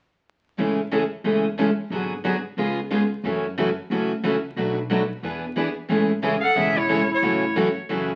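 A crackling, aged 78 rpm sound with a wet studio reverb frames this charming, swinging excerpt of jazz manouche in A major at 180 BPM, where two bright, picked steel-string acoustic guitars, one with finger squeak up front, carry the accompaniment over a woody, growly pizzicato upright bass, joined at 6.4 seconds by a rich, bowed violin melody and a soft, subtone clarinet second line arriving together.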